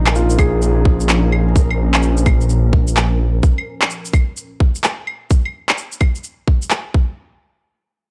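A swung 4/4 groove at 128 BPM, with 16ths pushed to 63% swing, drives this short, melancholic future garage clip cut from a longer piece, set in Bb minor with a rainy, nostalgic air. Overdriven electronic handclaps, claves and shaker open the groove at 0.1 s, and a tight, layered electronic kick joins them up front from 0.4 s. Underneath, a menacing detuned saw bass holds a saturated Bb1 with a filter swell and sidechain pumping, alongside a warbly, lo-fi tape-like pad that sustains a Bbm7 chord in the background through chorus, phaser and its own reverb. A felt-muted upright piano adds soft, intimate accompaniment with audible action noise and analog delay for just the opening 1.7 s, while a very quiet, flickering granular texture hovers on Bb4. The harmony drops out at 3.4 s, leaving only the drums to carry on in a dry, gritty hardware sound.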